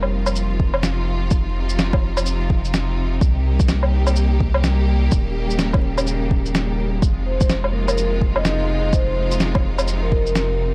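A dry, gritty hardware sound with vinyl crackle and a digital ambience frames this rainy, wistful future garage excerpt in F minor, moving at 126 BPM in 4/4 with a 62% swing on the sixteenths. A soft, round dub sub bass with tube saturation and sidechain pumping sits up front throughout, beside a lush, distant symphonic string section holding bowed chords with vibrato that also pump against the beat. Muffled, pitched-down sampler-style woodblock, shaker and a medium-tuned snare carry a tape-warm, compressed character, while a deep, layered electronic kick with overdrive enters at 0.6 seconds and sits prominently in the mix. A very quiet, dark electric guitar plays clean fingered accompaniment briefly at the start and returns near 7.7 seconds. At 7.3 seconds a mellow vibraphone struck with soft mallets arrives with a ringing, metallic melody trailed by tape echo, as the chords move from F5 through Cm7 and Eb7 to Fm7.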